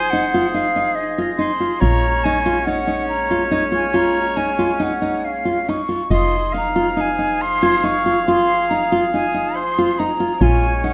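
Flute, clarinet, a woodwind section and a bass open together on a restless, hypnotic passage of contemporary chamber music in 5/4, cut from a longer piece. The breathy, hollow jazz flute carries the melody up front with vibrato and lifted highs, and a clear, distant clarinet sings a second line beneath it. A mellow woodwind section holds sustained chords with a smooth top, while a woody, round FM bass lays down dark, decaying low notes. From 0.1 seconds a full-bodied, fingerpicked nylon-string guitar adds arpeggios close to the listener, and between 1.2 and 8.8 seconds a very quiet, dry glockenspiel played with rubber mallets rings bell-like notes high above. The harmony sways between Fm7 and Bbm7, and a moderate recital hall reverb gives the ensemble a roomy setting.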